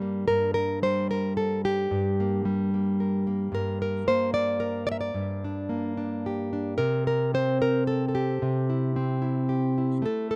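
Folk instrumental for solo fingerstyle acoustic guitar, a short piece cut from a longer one, in 3/4 at 111 BPM with a straight feel, in G dorian and tuned to A4 = 441 Hz. The mood is haunting and intimate. A nylon-string guitar carries everything from 0.0 to 10.4 seconds, fingerpicked in a classical manner across a range from G2 to E5. Its tone is warm, its strings fresh, and it sits up front in the mix. The harmony rests on Gm before moving to C at 6.8 seconds. Recorded outdoors with a light reverb, the sound is close and free of any room character.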